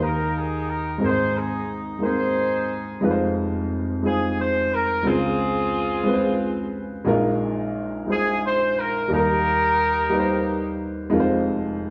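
In a slow 6/8 at 59 BPM, this uplifting, reverent gospel fragment sets a clear, punchy, vintage-toned horn section playing the melody with tight pop-style phrasing and light vibrato over a warm, natural baby grand piano accompaniment moving through Eb, Ab, Fm7, Dbmaj7 and Bb7sus4, both parts up front in a wet large-studio reverb that captures a band playing live in one room, with the horns dropping out at 10.8 seconds and the piano continuing alone until 11.9 seconds.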